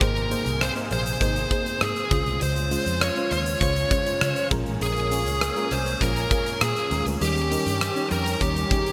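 A straight 4/4 pulse at 100 BPM drives this 1980s-style pop excerpt, with a huge arena drum kit of punchy kick, hi-hat and rim click pushed up front and treated with gated reverb that gives it a pumping, hall-sized feel. Underneath, a vintage muted fingered electric bass adds a dark, round, foam-muted tone, stopping at 8.6 s while the other parts carry on to 8.9 s. An FM electric piano layered with a soft pad supplies dreamy, decaying accompaniment shimmering with chorus and phaser, while a thick, detuned unison pad holds sustained chords with a slow attack and long release. Over this, a smooth overdriven lead guitar sings the melody with a picked, shadowy edge and a trail of delay. The harmony moves from Abadd9 through Dbmaj7 and Bbm7 to Eb7, and the bright digital production and lush hall reverb lend the whole passage an urgent, dramatic sweep.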